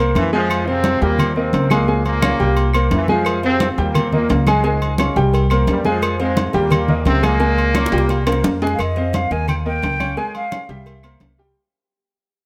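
Passionate and danceable, this salsa excerpt rides on a brilliant upright piano with audible action noise and a dark, pizzicato upright bass up front, while a punchy, tight trombone section carries the melody with light vibrato and tape echo until 8.5 s. Thick-skinned, saturated congas sit in the background beside ringing metal-shell timbales and agogo bells and very quiet, distant claves, and round, low-tuned cowbell and bongos join at 3.3 s. After a drum fill, an airy, tongued concert flute takes the melody at 8.7 s as the music fades out under light reverb.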